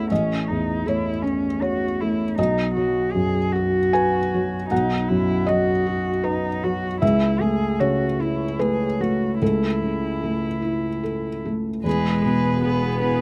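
Lightly reverberant yet dry, this fragment of intimate, hopeful neoclassical music drifts in a rubato 3/4 at 72-80 BPM, opening at 0.0 s with a thick-felted, mellow upright piano, its action noise audible under a slapback echo, beside a veiled, up-front con sordino cello, until a distant violin takes the melody at 11.8 s and, at 11.9 s, a viola with portamento and its own slapback echo, a very quiet chamber string section holding sustained chords, and a background double bass join as the harmony passes from A through B and A/C# to E.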